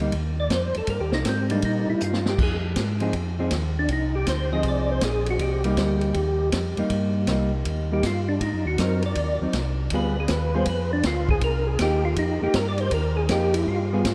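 A swinging soul jazz organ trio opens at once, with a mellow tonewheel organ holding down the bass line up front through a slow rotary speaker and a touch of key click, a dark, clean hollow-body electric guitar comping underneath, and a vintage acoustic drum kit with dark cymbals, a punchy kick and a medium-tuned snare. At 0.4 seconds a second tonewheel organ takes the melody and solos throughout, its round, percussive third-harmonic attack colored by chorus vibrato and its own slow rotary spin. The tempo sits at a brisk 160 BPM in 4/4 with a light swing, and the mood is smoky and late-night in C minor. The drums fit a short fill in around 2.0 seconds as the harmony moves from Cm7 to Fm7, and later an Ab7 and a tense G7b9 lead back home to Cm7. The whole trio sits in a vast, echoing cathedral-like space whose long wash lingers behind every phrase, and the piece is cut from a longer performance.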